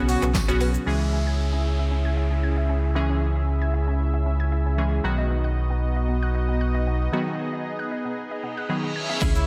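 Soaked in lush hall reverb, this dreamy, confident yet bittersweet dance-pop excerpt rests on a deep, full sine sub bass and a smooth, detuned analog pad, both pumping with sidechain, under a crystalline wavetable pluck. A punchy analog drum machine, a twangy direct-recorded clean electric guitar and a clear horn section flash by only at the start and end, and a faint jingly tambourine shimmers briefly at the start alone. Meanwhile a mellow, woody wave-folded pluck carries arpeggios from 0.9 s, an electronic downlifter passes early, and a reverse cymbal closes the break that begins at 7.1 s.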